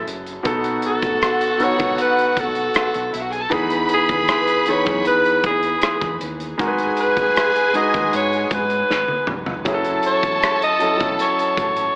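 Over a slow 78 BPM straight 4/4 groove from a punchy modern studio drum kit with a pumping room sound, a fill at 8.9 seconds, and a round, dark fingered electric bass, this bittersweet, cinematic 1970s-style soul passage sets a breathy, whispered alto saxophone melody with light vibrato against a lush bowed violin section and an intimate, clear grand piano with audible action noise, moving through B7, Emaj7, G#m7 and F#m7, all wrapped in light reverb and an AM radio tone.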